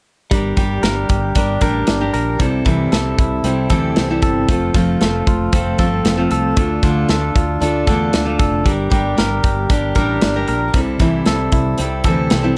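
A bittersweet, restless jangly indie pop excerpt in a straight 4/4, where a full-bodied picked steel-string acoustic guitar with audible finger squeak and a bright, twangy, compressed clean electric guitar playing arpeggios sit up front over a round, dark fretless bass and a tight, small-room drum kit of kick, snare and hi-hat, all in light reverb as the chords cycle from Gm through C6, F and Dm.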